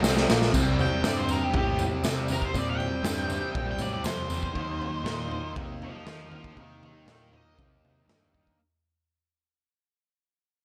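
This gritty, raw garage rock excerpt drives along at 119 BPM in a straight 4/4, opening with a drum fill that gives way to a fade-out running to the end. The raw garage drum kit sits up front, with a boomy kick, a medium-tuned snare, toms and crash cymbal, its saturated sound pumping in a small room with a rolled-off top. A jingly tambourine rings from a distant, larger space until 4.4 s, while the fuzz picked electric bass, overdriven and tube-saturated, holds down the low end from Bb1 to Eb3. Up front, the double-tracked fuzz guitar lays down a bright, compressed riff through chords moving from Bb5 to C5 and then Eb5 at 4.5 s. Above it, from 0.8 s, the octave-fuzz lead guitar takes a dark, distorted picked solo between G4 and G5, all set in light reverb and studio ambience.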